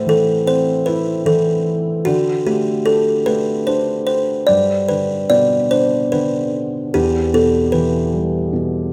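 A buzzing kalimba carries the melody up front, its thumb-plucked tines ringing with a woody, hollow-box tone and a buzzing rattle that sits just above the rest of the mix. Beneath it, a felt-muted upright piano provides soft accompaniment from the very start, its thick felt giving a dark, mellow sound with audible action noise that makes it feel close and intimate. This is a gentle, innocent children's lullaby in a lilting 3/4 with a straight feel, moving through a simple progression of Am, D5, G and Em. The kalimba joins at 0.1 seconds, and both parts play together through the brief passage, which is cut from a longer piece. A moderate reverb, like that of a scoring stage, lends the pair a soft halo of space while keeping them near the listener.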